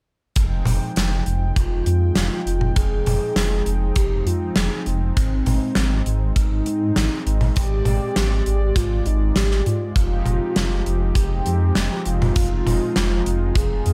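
A straight 4/4 groove drives this nocturnal, moody synthwave clip, with a tight, up-front kick and a gated 80s kit of hi-hat, medium-tuned snare and toms ringing in a bright stone room. A dark, rumbling detuned saw bass and a brassy analog pad with chorus, vibrato and sidechain pumping hold the chords from 0.4 seconds, moving from Fm7 to Ab and back. At 1.6 seconds a velvety synth lead enters, smooth and touched with chorus and delay.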